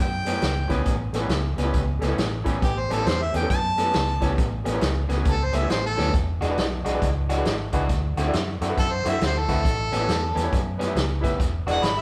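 A rollicking electric blues shuffle swings along at 137 BPM in 4/4, set in A mixolydian, its soulful groove moving through A9, E9 and D9 chords in this short excerpt cut from a longer piece. An up-front, clear harmonica carries the melody with light vibrato and scooped notes in a jazz-inflected solo, overdriven and present, pausing at 6.1 seconds before returning at 8.8 seconds. Beneath it, an electric guitar through a small old amp picks a slightly broken-up, lo-fi riff bathed in spring reverb, while a vintage muted fingered bass supplies a dark, round, punchy low end. A bright upright piano sits in the background with woody, brilliant accompaniment, its action noise audible and intimate. The vintage drum kit is natural and up front, with a punchy kick, a medium-tuned snare, hi-hat and toms, and it marks the midpoint with a fill at 5.9 seconds, all captured as a band playing live in a moderate stone room.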